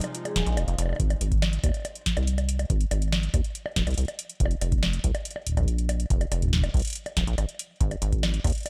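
A rubbery, resonant acid bass sits up front in this intricate, glitchy IDM fragment at 141 BPM in Ab major, its square-wave filter plucks decaying into darkness from 0.4 s onward. The opening moment over Fm7 holds a very quiet velvety synth lead, a detuned, warbling analog pad in the background, and mellow soft-mallet vibraphone arpeggios ringing through tape echo, before an analog kick joins at 1.0 s as the harmony moves to Ab and then leaves the chords behind at 4.4 s. A punchy electro drum machine with metallic hi-hats, snare and bongos carries delay throughout, the drums re-recorded in a small room and the mix kept dry.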